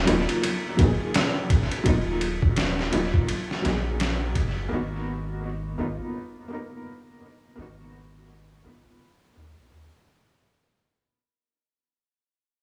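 An echo-heavy, lightly reverberant mix opens this brooding, hypnotic trip hop excerpt at 84 BPM with a swung feel, where a gritty, pitched-down sampler-style drum kit with a thumpy kick, ride cymbal and medium-tuned snare plays up front only until 4.6 seconds, while a felt-muted upright piano, mellow and intimate with tremolo and tape echo, and a deep, round dub sub bass carry the Ebmadd9 to Abm7 change through a fade-out.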